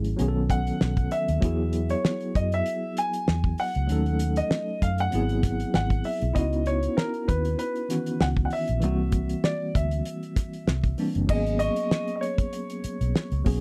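A warm grand piano carries the melody over a worn, lightly overdriven tine electric piano with fast tremolo, a round, foam-muted fingered bass and a dry, damped drum kit with a fat snare in this lush, romantic 1970s-style soul excerpt, swung on the 16ths and closely recorded, with a bell-like glockenspiel touched in softly in the background from 11.6 to 12.8 seconds.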